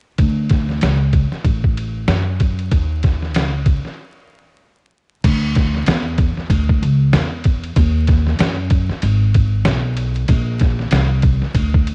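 A gritty, pitched-down sampler-style drum kit with a thumpy kick, medium-tuned snare, hi-hat, ride and crash sits up front with 12-bit crunch and cassette tape color beside a woody pizzicato upright bass in this warm, cool jazz-hop cut of swung hip hop, its dry, lo-fi home-cassette sound dusted with vinyl crackle and dulled highs, with a break at 4.0 s before a new section arrives at 5.2 s.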